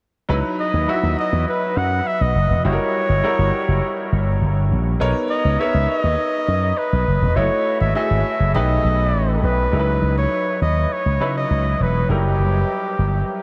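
A clear, slightly worn grand piano with lush chorus and a growly, amped slap bass through an envelope filter open together at 0.3 s, setting up a polished 1980s jazz-funk pop groove in C# minor at 102 BPM with an urban, nocturnal mood. A close-miked flugelhorn enters at 0.6 s to carry the solo melody up front, its warm pop-style tone touched with light vibrato, while the chords move from a rootless C#m11 through F#7b9, Bmaj9, F#m7 and Baug7 before the second section returns to C#m11 at 9.7 s. The whole mix is soaked in a huge ambient reverb that gives it a dreamy, floating haze, and the excerpt is cut from a longer piece.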